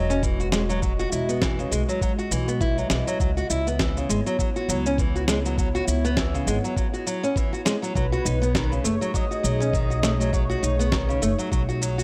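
This excerpt from an organic downtempo piece opens on a warbling, nostalgic pad holding sustained chords through chorus, phaser and sidechain pumping, beside a bright, fingerpicked nylon-string guitar whose arpeggios carry sampler grit and tape echo. A woody, dark pizzicato upright bass sits underneath, while a sampler-style kit of shaker, fat snare and thumpy electronic kick, compressed and re-recorded in a large room, settles into a hypnotic 101 BPM groove with a gentle sixteenth-note swing. The harmony moves from Emaj9 to C#m7, then reaches B13 at 8.0 seconds, where a breathy, flute-like synth lead enters with soft vibrato, ensemble chorus and analog delay. The overall sound is dry and gritty with a light digital ambience, giving the mood a hazy, lo-fi warmth.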